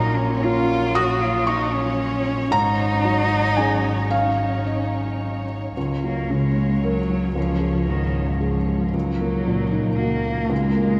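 Bathed in a wet cathedral reverb with a long 4.5-second tail, this tender, intimate neoclassical passage for piano and strings moves in a rubato 3/4 at 114 BPM, cut from a longer piece. Up front, a felt-muted upright piano plays a mellow accompaniment with its action noise audible, while a solo bowed cello carries the second line with expressive vibrato and portamento. Behind them a dark chamber string section holds smooth sustained chords, and a rich, distant bowed double bass anchors the low end, with the music moving into a new section at 5.8 seconds.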